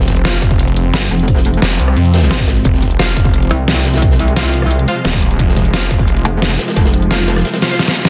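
Aggressive and tense, this dark technical drum and bass excerpt drives at 175 BPM in F minor, with a snarling, detuned saw bass growling up front under a punchy electronic kick and a layered dubstep kit with a deep snare, while a quiet, gritty breakbeat kit with a rolled-off top sits beneath. A metallic FM wobble bass with chorus joins at 0.9 s, a granular, swarming drone pumps in the background with reverb, and a bold, bright orchestra-hit-like stab with delay flashes at 0.2 s before returning from 3.0 s. The dense, heavily limited mix closes on a drum fill from 7.6 s.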